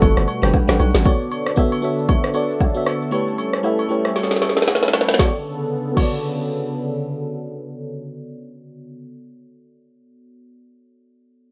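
A late-night, deep amapiano groove at 116 BPM in B minor, this brief cut from a longer piece swings its sixteenths over a chord movement from Gmaj9 to Bm9 and A7 before settling back on Bm9. A soft, round octave-layered synth lead touches a single A4 with chorus, vibrato and digital delay, sitting dark in the background and dropping out at 0.5 seconds. A glassy FM electric piano with a bell-like attack carries the accompaniment through its chorus and low-pass filter, while a smooth, detuned sawtooth pad holds sustained chords that pump against the sidechain. Up front, a hollow, bouncy log drum bass plays only briefly in the low register, and a punchy deep house kit with a woody snare, rim click, shaker and crash drives the groove alongside quieter agogo bells and woodblock until 6.1 seconds. A filter sweep runs from 1.1 to 5.2 seconds, ending in a drum fill and an electric piano fill, all in a dry, rough home demo mix.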